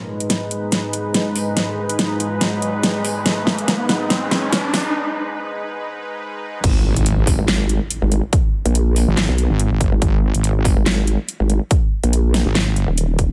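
A lush, detuned supersaw pad holds a G# minor chord under sidechain pumping and a low-pass filter sweep while a dubstep drum kit with a huge snare, metallic hats, handclaps and crash builds through a fill over a background riser, and after a short break the menacing, aggressive heavy wobble dubstep drop lands at 6.6 seconds in a swung half-time feel at 142 BPM, bringing an impact, a punchy, tape-warm electronic kick, a saturated sawtooth wobble bass thickened with chorus and overdrive, and, from 7.4 seconds, a nasal, resonant vowel-sweep wobble bass shaped by a formant filter, the whole excerpt set in light digital reverb.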